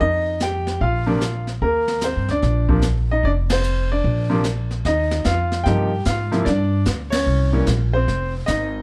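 A bright grand piano carries the melody over a woody, pizzicato upright bass and a brushed drum kit from the very start, settling into a relaxed, swinging jazz trio groove in this short cut from a longer piece. The piano sits up front with a brilliant, natural tone and a touch of plate reverb, while the gut-strung bass thumps close beside it and the drums add dark cymbals, a high-tuned snare and a boomy kick a little further back. The trio strikes shared accents at 3.4 and 7.1 seconds as the harmony moves from Fsus2 through Ebmaj7 and Eb6 toward a closing Fm7.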